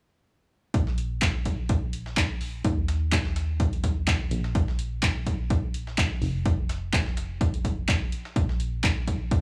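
A dry, gritty hardware sound with transformer saturation, cassette tape character and small room ambience gives this uplifting, joyful piano house excerpt its dusty edge. At 126 BPM in 4/4 with a swung sixteenth feel, an overdriven, punchy electronic kick sits up front alongside analog-flavoured electronic handclaps, which come in at 1.2 seconds and share the same distorted bite. Behind them, a sampler-style soul kit supplies compressed hi-hats and a medium-tuned snare, both high-pass filtered, with the hats pumping against the sidechain. A round, mellow FM bass with a fast attack and decaying notes moves between F1 and Eb2 in the background, also breathing with sidechain pumping. The groove runs steadily from 0.7 to 9.4 seconds as a single section cut from a longer piece.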